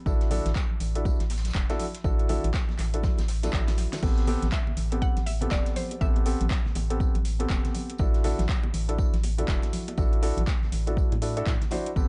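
Hypnotic and deep, this deep house excerpt from a longer piece sets soft, felt-muted upright piano stabs with delay over a hollow, organ-like FM bass, both pumping against a punchy, overdriven electronic kick, while a layered house kit with a fat snare, metallic hats, claps and crash sits beside background brushed jazz drums and hard-hand congas and bongos, and after a drum fill leads into the drop at 4.0 seconds, a woody, round mallet-like synth pluck with chorus, tape colour and delay appears briefly from 4.5 to 6.7 seconds, all within a dark, warm production.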